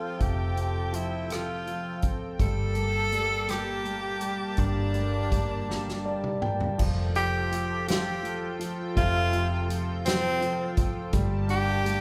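In a slow, straight 6/8 at 55 BPM, this tender, heartfelt pop ballad in F major sways between Fadd9 and Gmadd9 chords as a bright, up-front tenor saxophone sings the melody with jazz-style vibrato. A clear, intimate concert grand piano with audible action noise and long sustain accompanies it, over a shimmering, retro pulse-width pad with a slow attack and chorus, a dark, round, foam-muted fingered electric bass, and a natural country drum kit with a fat snare and punchy kick that enters at 0.2 seconds. The drums and piano each play a fill from 5.7 to 6.8 seconds, and the whole passage, cut from a longer piece, sits in a wet recital-hall reverb like a church or concert hall.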